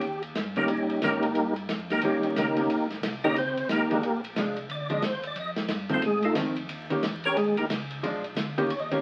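Sounding like a crackly old 78 rpm record in a lively club, this soulful, bluesy soul jazz organ trio excerpt swings at 180 BPM in 4/4, with a round, percussive tonewheel organ soloing up front through slow rotary speaker and chorus vibrato, a mellow organ bass sitting in the background, a small-room soul drum kit with dark cymbals on hi-hat, ride and snare, and a clean, compressed hollow-body jazz guitar comping up front from 0.6 seconds over Eb7, Bb7 and F7 changes.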